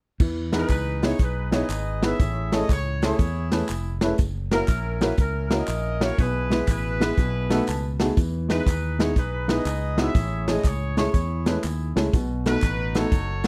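A swung eighth-note groove at 121 BPM in 4/4 drives this uptempo gospel piece in E major, its mood hopeful and reverent. The polished big-band drum kit sits up front, with a tight kick, a medium-tuned snare, hi-hat and crash cymbal, and an airy hall quality. A fingered electric bass, warm, direct and up front, anchors the low end, while a baby grand piano with a warm, natural tone comps underneath and steps forward with a brief fill from 7.2 to 8.2 seconds. From 0.5 seconds a jazz-style horn section carries the melody, tight as an ensemble yet distant and roomy in the mix, while a tube shaker and group handclaps add a faint small-room texture in the background. The harmony moves through Emaj7, Amaj7, F#7, E/B and B7 in a dry, close 1970s-style studio sound, and the clip is cut from a longer piece.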